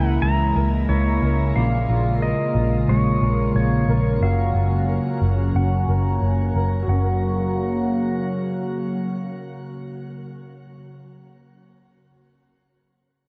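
A round, foam-muted electric bass sits up front in this floating, blissful dream pop excerpt, its dark, amped tone anchoring the low end. Beside it, a phased analog pad holds sustained chords with a swirling, nasal sawtooth character, slow attack and long release, colored by phaser and chorus. A picked twelve-string acoustic guitar weaves arpeggios through the texture, its boxy, shimmering, octave-doubled parlour sound treated with lush chorus and delay. Above them, a clean, twangy pedal steel guitar carries the melody with fingerpicked slide lines and volume swells, softened by a low-pass filter and delay. A filter sweep runs through the opening section until 6.9 seconds, where the harmony settles from a drifting progression of Dbm6, Bbm7 and Gbmaj7 onto a plain Gb major chord. The dark, warm production is bathed in a moderate shimmer reverb, and the pedal steel and pad stop at 10.3 seconds while the guitar and bass ring on briefly before the cut.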